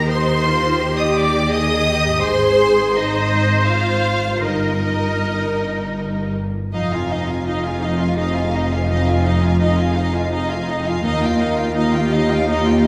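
Moving and hopeful, this cinematic orchestral film cue unfolds in a rubato 3/4, with a focused chamber violin section singing the high melody over a lush symphonic violin section carrying a second line and a distant viola section in accompaniment. A close, vibrato-rich cello section and a dark, woody double bass section share the bass, while a thumb-plucked concert harp rings out arpeggios in the background. All six parts play throughout this brief cut from a longer piece, bathed in the generous reverb of a recital hall.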